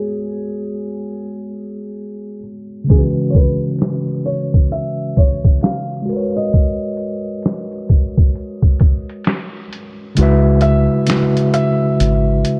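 A hazy, cassette-worn sound with light reverb frames this reflective lo-fi hip hop excerpt at 66 BPM in C# dorian, where a soft, felt-muted upright piano with audible action noise and tape echo carries the melody over a mellow, clean tine electric piano beneath a filter sweep, a gritty, pitched-down boom bap drum kit with finger snaps and a thumpy kick joins at 2.9 seconds, and at 10.2 seconds the sweep ends, the kick falls silent and a round, punchy dub bass steps up front.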